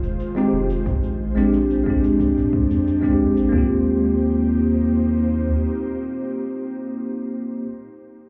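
This relaxed, smooth sunset chillout excerpt opens with an ethereal, airy pad of detuned, chorused sustained chords, a round, dark analog bass with tube saturation, and a gritty, tape-toned shaker sitting in the background. A bell-like tine electric piano follows almost at once, bright and up front, its accompaniment coloured by vintage 12-bit sampler grit and a digital delay. An overdriven, layered electronic kick drum enters at 0.9 s, while the shaker drops out at 3.5 s and the kick soon after. At a steady 90 BPM in 4/4 with a straight feel in Eb major, the harmony moves from Fm7 to Bb13 before settling on Eb6. The whole mix sounds muffled, as if heard through a wall into a club, with a plate reverb adding a soft digital ambience, and the electric piano rings on alone until 7.7 s.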